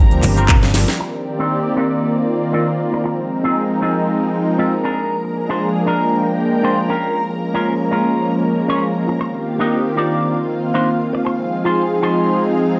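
Sensual and cosmic, this nu-disco passage in C minor at 117 BPM with a light 16th-note swing opens with a brief burst of punchy fingered electric bass through an envelope filter, a house drum kit fill of cracking snare, metallic hats, handclaps, shaker and toms, a punchy, tape-warm electronic kick and bright congas tucked in the background, each finished by 1.0 seconds. Meanwhile, from 0.1 seconds a twangy, clean, picked electric guitar riff with its own envelope filter rides up front over a smooth, warbling, detuned analog pad and a lush vintage string machine whose filter sweep runs from 1.0 to 12.8 seconds. Both pads pump under sidechain through chords moving from Cm9 to Ab6, Bb7 and Db6, all in a moderate digital room reverb.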